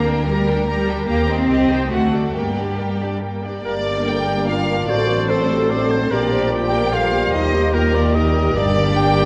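Heard through worn, warbling old cassette tape with drifting pitch and a wet concert-hall reverb, this dramatic, stormy classical fragment in G minor moves in a brisk 3/4 at 147 BPM. A lush, focused violin section carries the melody over a soft-edged, sul tasto second violin line, a smooth viola section in the background, a bowed cello section, and an expressive double bass section up front. At 3.6 s, the woodwinds and brass join: a dark clarinet and a close-miked, warm cor anglais add second lines, a shadowy bassoon fills out the accompaniment, and a mellow French horn section holds sustained chords in the background.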